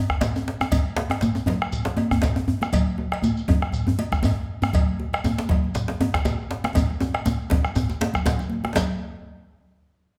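West African traditional drumming from a full ensemble, earthy and powerful, moving at 119 BPM in 4/4 with a light swing on the sixteenths. This short excerpt is cut from a longer piece. A round bombo sits up front beside a deep djembe fitted with metal rattles and struck with hard hands, while a second djembe, also deep, holds a place further back. Metallic cowbell and a grainy, mellow shekere with a band-limited, vintage color join almost at once, and bright, high-tuned congas with thin skins enter at 0.7 seconds. Each drum is captured close and dry, yet the group plays live together in one large studio whose reverb adds a generous room tail. A drum fill runs from 6.8 to 8.8 seconds, leading into a new section just as the clip closes.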